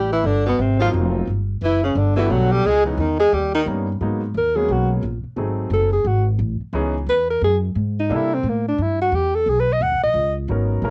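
A swinging 176 BPM pulse in 4/4 drives this cool, small-group jazz passage cut from a longer piece, settling into G# minor at 4.0 s, with a woody pizzicato upright bass up front throughout and a clear tenor saxophone adding a second line beneath the dark, subtoned alto until 3.7 s. From 4.0 s the alto takes a smooth, lightly vibratoed solo, while an intimate grand piano with audible action noise comps underneath, then drops out at 8.3 s and re-enters briefly at the close. The horns and piano carry the soft hiss of a home cassette recording, all set in light reverb.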